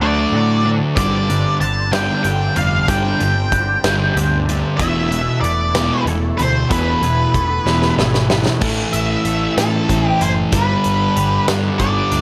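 Dark and brooding, this short section of a longer quiet-loud alternative rock piece moves at 63 BPM in a slow, straight 6/8, centred on A minor. A thick fuzz guitar sits up front with a dark, distorted riff, while an octave-fuzz lead guitar, also distorted and forward, carries the melody through analog delay. Behind them, a bright, twangy twelve-string electric guitar plays compressed, clean arpeggios bathed in ensemble chorus, and an overdriven picked bass adds a growly, punchy low end. A big rock drum kit enters at 1.0 seconds with a punchy kick, a medium-tuned snare and a rolled-off top, and it plays a fill just before the lead guitar solo begins at 8.6 seconds. The harmony drifts from D through suspended chords to Am and G, and a small room reverb gives the whole band a close, tight space.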